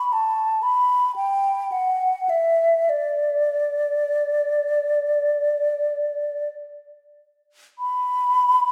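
A mellow concert flute carries this brief classical fragment alone, playing freely and expressively with an unmetered feel. Its tone is pure and hollow, with a gentle vibrato, soft attacks and lifted highs, and the flute sits up front in the mix. The line stays between D5 and B5, and the music has a serene, nostalgic calm. A wet recital-hall reverb with a long tail surrounds the instrument, as though heard from further back in the room. The flute plays from the start until 8.7 seconds, a short passage cut from a longer piece.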